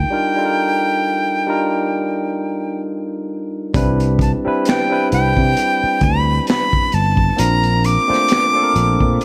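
Light studio reverb frames this soulful neo-soul R&B excerpt, where a breathy, bright flute with vibrato carries the melody over a barky, lightly overdriven tine electric piano and a growly, sustaining fretless bass, all three up front, and a crunchy, gritty breakbeat kit with punchy kick, high-tuned snare, hi-hat and finger snaps joins them at 3.7 seconds.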